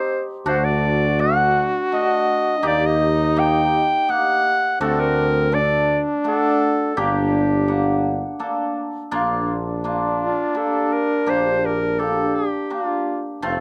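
Close, detailed microphones and a light reverb give this short klezmer excerpt an intimate, present sound. Set in 3/4 at 83 BPM with a straight feel, it sits in G harmonic minor before turning to Bb major at 9.1 seconds, and the mood is soulful yet festive. A clear, classical-style clarinet carries the melody up front, while a breathy trombone plays a jazz-inflected second line with vibrato and scooped notes. Hammered cimbalom fills out the accompaniment with shimmering, ringing acoustic tones, also placed up front. A mellow tuba enters at 0.5 seconds on the bass, adding light vibrato in a classical manner beneath chords that move from D to Eb, back to D, and on to G minor.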